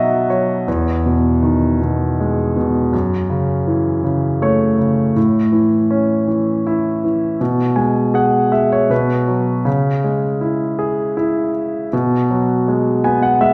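Hopeful and heartfelt, this short folk passage in 3/4 time is cut from a longer piece and carried by a lone concert grand piano, intimate and up front, with deep bass, long sustain and audible action noise. Its harmony moves through rich seventh chords before shifting to a new section at 9.7 seconds. The piano rings out in a church or concert hall, where a lush, lingering reverb wraps the polished tone.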